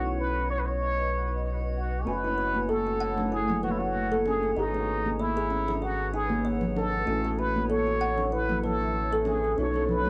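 A breathy, plunger-muted trumpet sits up front with plate reverb and analog delay, leading this hypnotic organic downtempo excerpt at 96 BPM in F# dorian, over a felt-muted upright piano with audible action noise, a blurred granular cloud pad, a round, deep analog bass and a glassy, drifting harmonics texture, joined by a woody kalimba with tape echo at 2.1 seconds and distant congas and bongos at 2.2 seconds, all set in a wet booth ambience with a cassette home-recording character.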